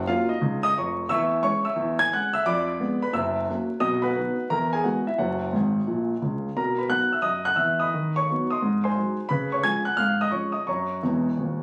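Captured as if on a phone in the room, with light studio reverb and a layer of vinyl crackle, this short cut from a longer stride piano performance feels swinging and playful. A solo grand piano sits up front with an intimate, natural tone and audible action noise, roaming from deep bass to bright upper register as the changes move through diminished and dominant seventh chords. It tosses in brief fills at 5.5 and 11.0 seconds, closing each half of the passage.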